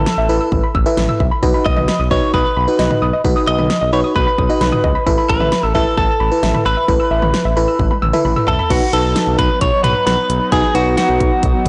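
A clean electric guitar, recorded direct and sitting up front, carries the melody in this wistful yet upbeat synth-pop excerpt, its picked, compressed tone thickened by analog chorus and a slapback echo. Beneath it, a glassy FM electric piano with a bell-like attack fills out the chords, while a soft, round pluck with a dark, detuned edge spins high arpeggios until 8.7 seconds. A smooth, mellow synth bass holds the low end, and a punchy, layered pop drum kit with a fat snare drives the straight beat, rolling through a fill just before the music moves from Asus2 and B into its second passage. At 9.5 seconds a swirling, evolving analog pad slips in behind everything else, bright but set back, with phaser, chorus and tremolo. The whole mix is blown-out and overdriven, with light digital reverb and a dulled top end.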